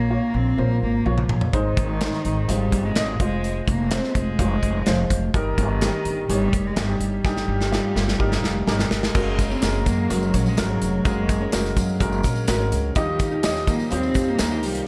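Hopeful and anthemic, this piano-driven pop piece at 126 BPM sets a dark, bowed cello melody with vibrato, portamento and analog delay over boxy upright piano accompaniment with subtle chorus and a thumpy pizzicato upright bass, as a punchy studio drum kit enters at 1.1 s and a bright fingerpicked steel-string acoustic guitar and jingly tambourine join in the background at 9.1 s, in a dreamy, reverb-soaked mix.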